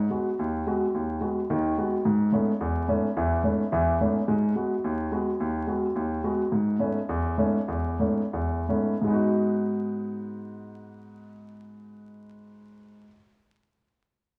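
Vinyl crackle and a wet spring reverb frame this short cut from a longer piece, which sounds as if heard from further back in a small room. A solo grand piano with a warm, short-sustained tone sits up front, swinging cool, hypnotic jazz in 4/4 over a repeating G#m7 and Aadd9 harmony. The pulse slows between 6.5 and 9.1 seconds before the piano settles back on G#m7.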